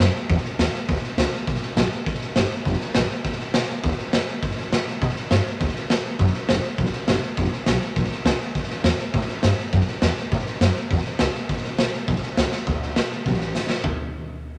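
A rowdy, upbeat burst of rockabilly, cut from a longer piece, driven by a straight 4/4 feel. An upright bass carries the low end from the start, its plucked steel strings sounding woody and thumpy as it moves through a low register. Alongside it, a raw garage drum kit of hi-hat, kick, snare and toms sits up front, its punchy kick and medium-tuned snare gritty and saturated, with a rolled-off top and a pumping room sound that rings like a bright stone chamber. The kit throws in a drum fill at 12.5 seconds, just before a brief new section begins at 12.7 seconds, and another at 13.5 seconds. A moderate studio reverb gives the pair a shared space, and both parts play through to the end of the clip at around 14 seconds.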